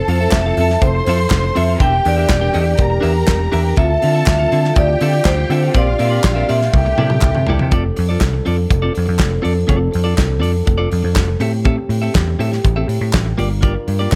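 Joyful and danceable, this disco excerpt opens with a ringing, metallic vibraphone melody and lush, bowed strings set back in the mix, both dropping out by 7.7 seconds. A drum fill closes that opening stretch. Underneath, a mellow French horn section holds sustained chords while a bright, twangy clean electric guitar accompanies, a dark, round picked bass sits up front, a punchy studio drum kit drives the groove, and hollow group handclaps linger in the background, all within a small room's reverb.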